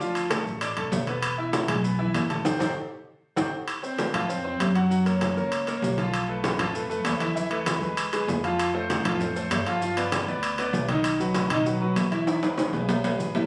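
A bright concert grand piano plays through this driving, danceable salsa cut at 196 BPM in 4/4, sitting up front with a brilliant, open tone, deep bass and long sustain as it plays accompaniment over chords moving from Dm through E to Am7. Underneath, a woody, growly pizzicato upright bass on steel strings gives a thumpy foundation, while low-tuned congas with a soft-handed, vintage, band-limited ring and grainy, mellow maracas fill out the groove. Metal-shell timbales, ringing and close in a small-room sound, join at 0.2 seconds, and the band hits an accent from 2.5 to 3.7 seconds. The second section then shifts through richer harmony such as Fmaj7#11, Esus4 and G7 before landing on E, with a drum fill closing out the cut from 12.3 seconds. The whole piece sits in a moderate studio reverb, heard as if captured on a phone in the room, and it is cut from a longer performance.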